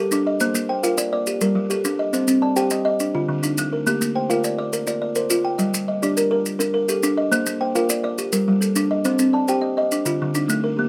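Warm and rippling, this short cut of southern African traditional music turns an mbira-style interlocking cycle in 12/8 with a straight feel. Up front, a buzzing kalimba plays arpeggios from the opening moment, its short thumbnail plucks woody and hollow-boxed, with a vintage, band-limited rasp. Beneath it, a second kalimba adds softer arpeggios, fingertip-plucked on a solid board and sitting mellow in the mid-range. Grainy maracas join at 0.1 seconds and carry on until 10.6 seconds, their acoustic shake compressed and saturated. The harmony cycles through Bb, Gm, Cm and Dm, lingering on Bb and Gm in the middle before the circuit comes round again, and a light reverb lends the sound a gentle sense of space.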